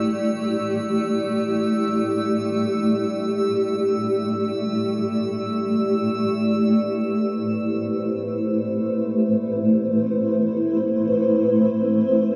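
Ambient and melancholic, this reflective excerpt sets an up-front granular cloud pad of blurred, detuned sustained chords against a faint, glassy texture of drifting overtones that ends at 6.3 s, when a filter sweep begins on the pad, all washed in a huge, dark reverb.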